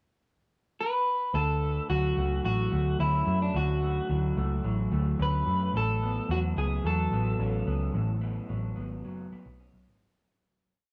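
Set in a straight 4/4 at 109 BPM, this short, dreamy and laid-back indie and bedroom pop piece in A major opens with a pickup bar, where a lead electric guitar through a small old amp enters at 0.8 s with an up-front, motif-based melody, slightly broken-up and touched by subtle chorus and analog delay. At 1.3 s a second amp-driven guitar joins with a lo-fi fingerpicked roll pattern carrying subtle chorus and warbly pitch drift, alongside a vintage muted picked electric bass playing a round, foam-muted, melodic line over the shift from Dmaj7 to A69. Light reverb gives a dark, intimate cast before the fade-out from 7.9 s.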